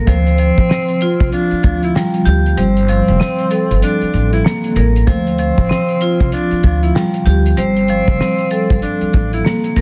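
Boom-bap hip-hop excerpt at 96 BPM in D minor with a swung 16th feel, dark and tough, where a bright, ringing vibraphone struck with hard mallets, its slow motor vibrato coloured by cassette-tape grit, sits up front over a woody, thumpy pizzicato upright bass and a dry, cloth-damped drum kit with a fat snare and tight kick (the kick drops out from 2.6 to 5.1 seconds), while a distant, breathy tenor saxophone whispers a mellow subtone solo with scooped notes and digital delay over chords alternating between Dm7 and Gm11, framed by light reverb and vinyl crackle in a dense, heavily limited master.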